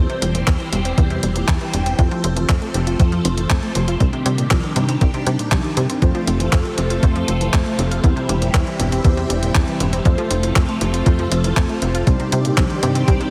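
Sunny and romantic, this italo disco excerpt moves at a straight 119 BPM in 4/4 and sits in F major, cycling through C/E, F and Cmadd9. Sampler-style handclaps and hi-hat from a clean 12-bit drum machine open at 0.1 seconds, and a thumpy, up-front electronic kick joins at 0.5 seconds to drive the groove, both carrying a small room ambience and a tape-like tint. A tight, punchy sequencer bass built from sawtooth and square waves with a ring-modulated edge pushes forward prominently, while a round analog pluck plays arpeggios in the background, coloured by chorus and tape echo. Above them, a swirling vintage string machine holds soft-attack sustained chords, shimmering through ensemble chorus and phaser. At 6.0 seconds, mellow synth brass enters with detuned, warbling stabs, dark and brassy under chorus, vibrato and tape echo, all set within light reverb and a heavily compressed, radio-like sound.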